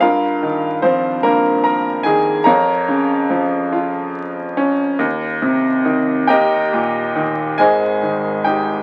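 Reflective and wistful, this short cut from a longer classical piece features a bright, brilliant baby grand piano playing alone up front with long sustain, drifting in rubato at 47 BPM in 6/8 through Ab major harmonies that settle on an Ab chord at 7.6 seconds, all heard through light reverb and the crackle of a very old 78 rpm record.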